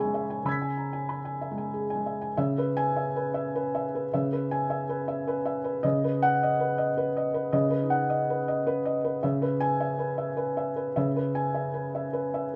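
A felt-muted upright piano plays alone from the start, its soft, intimate tone sitting up front in a moderate studio reverb as this neoclassical minimalist piece in C# minor unfolds in a rubato 3/4, drifting between 91 and 108 BPM. The mood is reflective and wistful, with the harmony moving from C#m7 to Badd9/C# at 5.8 seconds and back to C#m7 at 9.2 seconds. The piano spans C#3 to B6 and is tuned slightly sharp to A4 = 441 Hz, within a brief passage cut from a longer piece.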